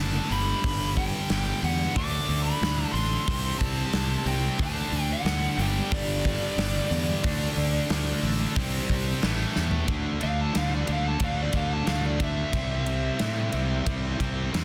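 Swaggering and anthemic, this hard rock excerpt struts at 91 BPM in a straight 4/4, with a dark, smooth overdriven lead guitar singing a melody through tape echo over three picked, bright rhythm guitars playing a riff in the background: one overdriven, and two high-gain distorted, one of them double-tracked. Up front, a growly, fuzz-laden fingered bass and a punchy, big-room acoustic kit with bright cymbals drive the groove, the chords moving through G, D5, C5 and A5. A drum fill at 9.5 seconds sets up a lead guitar solo at 9.9 seconds, where the double-tracked high-gain guitar drops out, all under light reverb and a dense, heavily limited modern master.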